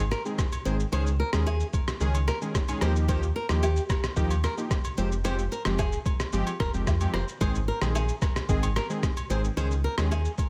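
A straight 4/4 afrobeats groove at 111 BPM drives this smooth, mellow excerpt from a longer piece, built on a muffled, thumpy, overdriven sampler-style drum kit of kick, rim click and shaker sitting up front beside a deep, full sine sub bass with octave, while detuned sawtooth analog keys with chorus and a filter sweep move through Ab, Dbsus2, Ebadd9 and Fmadd9, a fingerpicked flamenco guitar riff with fresh strings and digital delay repeats high above, and close, dry agogo bells and woodblock tick in the background, all in a dry room with little reverb.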